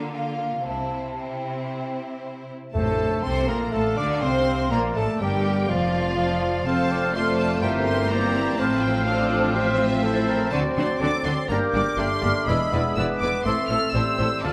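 A rich, smooth violin section carries the melody in this graceful, cheerful excerpt from a quick classical-period orchestral movement, played with rubato over a hollow, airy flute line, background violins and violas, a bright, lush cello section and a clear, distant double bass that enters at 0.6 seconds. At 2.7 seconds the winds join: a roomy clarinet, a mellow bassoon and a French horn section holding mellow sustained chords. A moment later a dark cor anglais adds another line, along with a brief, articulate touch of hard-mallet timpani. The orchestra sits in a wet scoring-stage reverb, and the harmony turns toward minor chords as the passage moves on.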